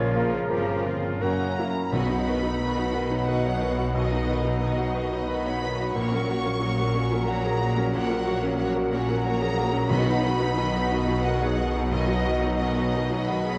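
A worn, warbling old-tape sound with pitch drift and a moderate scoring-stage reverb colours this hopeful, uplifting cinematic film-score excerpt in a rubato 3/4, where distant, lush violin sections carry the melody and a second line over a brilliant grand piano, rich violas, a ringing, very quiet harp, a bright double bass section and smooth cellos, while an airy flute ensemble, a solo oboe and mellow French horns sound only at the opening before 1.9 seconds, and hard-mallet timpani strike at 1.9 and 9.9 seconds.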